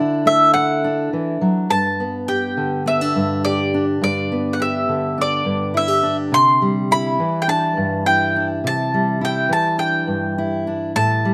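Peaceful and warm, this short cut from a longer acoustic folk piece moves at 104 BPM in a straight 4/4 in G major, passing from Dadd9 to G and then Cadd9 at 6.3 seconds. A woody, double-strung mandolin carries the picked melody up front with a touch of slapback echo, while a dark, fingerpicked steel-string acoustic guitar accompanies, its finger squeaks audible. Recorded outdoors, the sound is dry and close, with little reverb around the two instruments.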